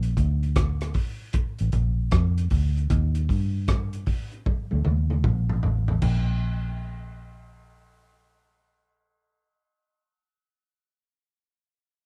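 Roots reggae excerpt at 77 BPM with a sunny, swung sixteenth-note feel, where a round, foam-muted vintage fingered electric bass holds the low end up front while a crunchy breakbeat drum kit, gritty and saturated with dark cymbals and a tight kick, plays crash, hi-hat, rim clicks and toms, moves through a fill from 4.5 to 6.0 seconds and stops at 6.3, leaving the bass alone until 9.9 seconds in a dry, rough home-demo sound.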